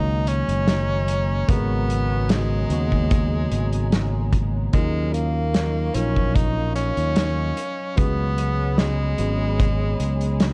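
Vaporwave with a faded, woozy mood, this short excerpt moves at a slow 74 BPM in a straight 4/4, drifting through lush extended chords from F#69 to G#m11, D#m9 and C#7sus4. An edgy tenor saxophone carries the melody in a forceful, jazz-style solo with vibrato, sitting present in the mix and trailed by tape echo. Underneath, a clean tine electric piano played through a combo amp supplies accompaniment with a subtle chorus, while a warbling, nostalgic tape-like pad enters at 0.4 seconds, holding mellow, detuned sustained chords in the background with chorus and its own reverb. A punchy fingered electric bass sits up front, and a loose indie drum kit of hi-hat and a medium-tuned snare joins at 0.3 seconds, with a tight kick arriving at 1.5 seconds, both captured in a small, pumping room. The overall production is dark and cassette-tinged, lightly touched with studio reverb.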